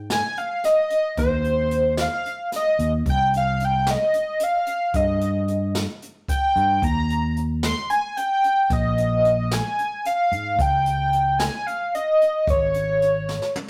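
Driving and intricate, this progressive instrumental band piece runs in 7/8 at 223 BPM counted in eighths, with a straight feel in Db lydian, and it is cut from a longer piece. A shimmering, retro pulse-width lead carries the melody between C5 and C6, its fast attack and sustained notes thickened by chorus and placed up front. Beneath it a fingered electric bass sits amped and growly, also forward in the mix, spanning Ab1 to Ab2. A jazz brush drum kit with a medium-tuned snare, boomy kick, hi-hat and toms sounds natural and acoustic, closing with a drum fill from 13.3 seconds. The harmony moves from a rootless Ab through Cm, Eb5 and Db5, all set in a moderate stone room with a rough rehearsal-room character and tube saturation.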